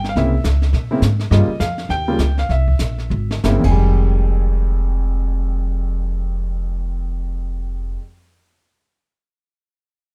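This late-night jazz piano trio cut opens with grand piano, upright bass and brushed drums together, swinging in 4/4 at a brisk 176-208 BPM in F minor. The concert grand carries the melody with a warm, vintage tone and deep bass, sitting up front beside the woody, plucked upright bass, whose steel strings sound dark. The brush kit sits lower in the mix, with a smooth, small-room sound, a high-tuned snare, a boomy kick and shadowy cymbals. The tempo starts slowing at 1.3 s as the harmony moves through C7b9, Gm7b5 and C7 toward Fm9, and a drum fill arrives at 3.1 s. The drums stop at 3.7 s, leaving piano and bass to carry on in a close, detailed recording with little reverb.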